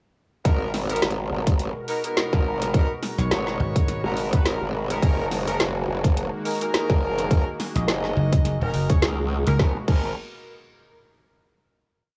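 Swaggering and playful, this short glitch hop piece in G# minor at 105 BPM with a swung 16th feel rides a drop of growling, wobbling bass, punchy bright horn stabs with analog delay, a tight layered electronic kick and a kit of woody snare and metallic hats, while a detuned sawtooth pad holds G#m9 and F#69 chords in the background, a foam-muted thumbed slap bass cuts in at 3.2 and 7.8 seconds, and the piece closes on a final chord at 9.6 seconds in a dry, gritty, cassette-tinged small room.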